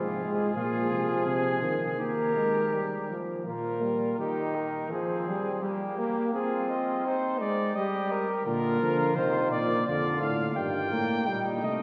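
A mellow, softly attacked cornet with light vibrato carries the melody up front in this driving yet contemplative classical brass canzona in Eb major, moving in 3/4 at 85 BPM. A distant, roomy trumpet sings the second line, a close-miked, warm trombone supplies the accompaniment, and a far-off tuba holds the bass until 4.2 seconds before returning at 8.5 seconds, the ensemble set in a wet church reverb.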